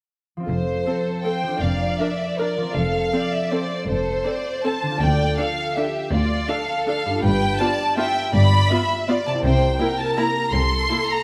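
This is a classical orchestral ballroom waltz in F major, sweeping and festive, moving at 161 BPM in 3/4 with uneven beats and a rubato lilt. A concert harp opens at 0.4 seconds with ringing, fingerpicked arpeggios, the violin melody, cellos and double basses join at 0.5 seconds, and the second violins and violas follow at 0.9 seconds. The violin melody sits up front with expressive vibrato and portamento. A second violin line adds a smooth, even layer beneath it, and the violas fill the middle with rich, lush accompaniment. The cellos stay in the background, and the double basses give a dark, soft-attacked foundation, both gliding with portamento. The harmony moves from F through Bb/F and Dm to G7 and C7, all bathed in a recital-hall reverb, and the passage is cut from a longer piece, breaking off at 11.2 seconds.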